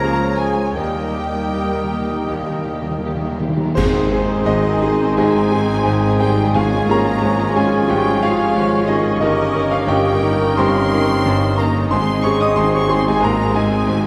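In a flexible, rubato four-beat pulse, this lush, lyrical romantic movement for piano and orchestra unfolds as a fragment cut from a longer piece. A clear concert grand piano with a deep bass sits up front and carries the melody, shadowed by a very quiet violin section singing with vibrato and portamento. Around it, a second violin section, a mellow clarinet, a softly attacked oboe and an airy silver flute weave second lines, while a dark bassoon and a smooth, even viola section fill in the accompaniment. French horns and trombones hold sustained chords, a distant trumpet section adds stabs, and tuba, focused double basses and cellos anchor the bass. From 0.8 seconds, timpani struck with hard mallets play a fill, joined by a cymbal swell, clash cymbals and concert bass drum, which help mark the full-band accent at 3.8 seconds before falling away by 5.1 seconds. A generous scoring-stage reverb lends the orchestra a spacious, romantic glow.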